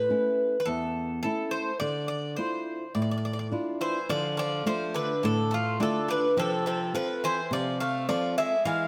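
Cool and moody, this Greek folk excerpt moves at 105 BPM in a straight 4/4, set in D dorian sharp4 over chords of A, Dmadd9, Dm and F. Up front, a bright, metallic bouzouki carries the melody on picked double strings with some octave-doubled courses, while a fingerpicked flamenco guitar with a warm tone supplies the accompaniment. At 3.8 seconds a second bouzouki joins with a lower line touched by tape echo, all set in a moderate plate reverb with a long 2.5-second tail.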